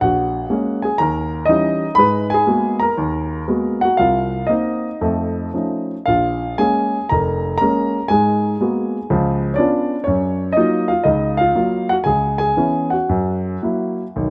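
A rough home-demo mix with light studio reverb frames this sophisticated, relaxed solo jazz fragment in F# major at 109-124 BPM. A single dark, mellow grand piano sits up front with a vintage, short-sustained tone and plays alone for 14.3 seconds, ranging from E#1 to B5 with a loose rubato swing through rich extended harmonies such as D#7b9, G#m9 and F#maj7 before closing on F#7.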